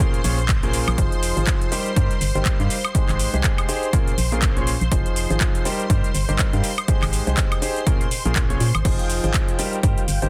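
Piano house with a soulful, energetic mood and a swung groove, cut from a longer piece. A clear concert grand piano carries the riff, its intimate tone showing audible action noise, deep bass and long sustain, with dub echo and sidechain pumping. Under it sits a punchy analog-style electronic kick, up front with a large-room character, which stops at 9.9 seconds, along with a layered, tape-warm house kit of crash cymbal, handclaps, metallic hi-hats, shaker and woodblock. An organ-like FM bass joins at 0.2 seconds with a hollow, percussive, dark tone, a fast attack that then decays, and sidechain pumping. Quietly behind everything, a silky, nasal sawtooth string pad holds sustained chords with ensemble chorus, vibrato and sidechain pumping, cycling through Bbm7, Fm7, Cm7/G and Abmaj7. The mix is dense and heavily limited, with a digital ambience and a modern finish.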